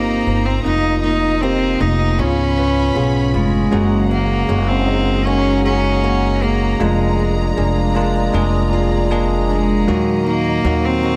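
In a straight, unhurried 4/4 at 78 BPM, this pop ballad carries a heartbroken, emotional mood through a short passage cut from a longer piece. A single bowed cello sings the melody up front with a rich, reedy, gut-string tone and light vibrato, while a clean, bell-like tine electric piano with subtle chorus plays the accompaniment beneath it. A lush, intimate studio string section holds sustained chords sul tasto with a soft attack, and a very quiet fingerpicked steel-string acoustic guitar adds arpeggios, with an audible finger squeak. A woody pizzicato upright bass sits up front, and every part plays from the start to the close at 11.2 seconds. The harmony opens on Cm7 and moves to Gbadd9 as a new section begins at 3.7 seconds, coming to rest on Ebm, all framed by light reverb and studio ambience.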